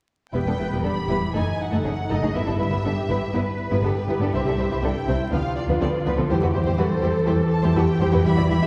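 Heard from further back in a wet, reverberant scoring stage under a layer of vinyl crackle, this brief classical fragment in E minor moves restlessly and stormily at 122 BPM in a rubato 4/4, with a focused, vibrato-rich violin section singing the melody over a second, soft-attacked violin line, rich violas in accompaniment, ringing fingerpicked harp arpeggios set in the background, expressive cellos likewise kept in the background, and a smooth, even double bass section anchoring the low end.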